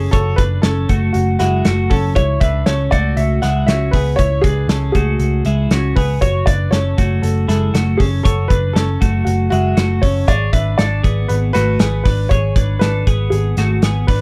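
Jangly indie pop in F# minor at 118 BPM, restless and wistful, cut from a longer piece, with a woody upright piano carrying the melody over bright, twangy twelve-string electric guitar arpeggios, a dark, round, foam-muted picked bass up front, and a loose acoustic drum kit with tight kick, medium-tuned snare and hi-hat pumping in a small room, while the chords move from F#m to C#m and back before landing on G#dim at 10.3 seconds.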